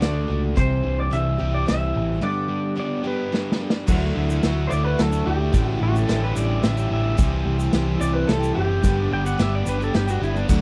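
A nostalgic, hopeful folk-rock and heartland-rock excerpt in 3/4 at 109 BPM opens on punchy, dark-cymballed vintage drums, a round, up-front electric bass, a shimmering octave-doubled twelve-string acoustic, a double-tracked crunchy overdriven riff guitar and a clean, compressed pedal steel with volume swells, before a twangy, slightly broken-up lead guitar carries the melody from 0.6 s; after a break capped by a drum fill, a reedy, breathing pedal harmonium and a grainy tube shaker join softly in the background at 3.9 s as the tune settles into D mixolydian, all captured in a dry, close 1970s-style sound with lossy compression artefacts.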